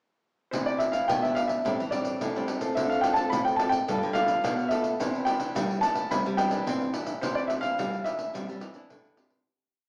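From 0.5 s, a playful, festive samba and choro piece in C major at 108 BPM unfolds: an intimate, up-front grand piano with audible action noise spins a motif-based melody in sentence-like phrases over a fingerpicked nylon-string guitar carrying a samba bass figure with finger squeak, a second classical nylon-string guitar in the background plucking thumb bass and syncopated chords, and a jingly pandeiro struck with hard hands, the live band bathed in wet large-studio reverb with a small-speaker sound before fading out from 7.2 s.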